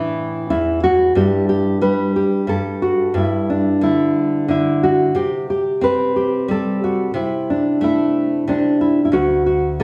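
A thumb-plucked nylon-string guitar sits up front in this gentle, nostalgic folk excerpt, its classical tone ranging from D2 to B4 at an unhurried 90 BPM in 3/4. Playing solo throughout its 9.8 seconds, it moves through A5, Em7/G, G5, C5 and Am/C before arriving on D. A slapback echo trails the guitar, and a recital-hall reverb with a small-room ambience surrounds it.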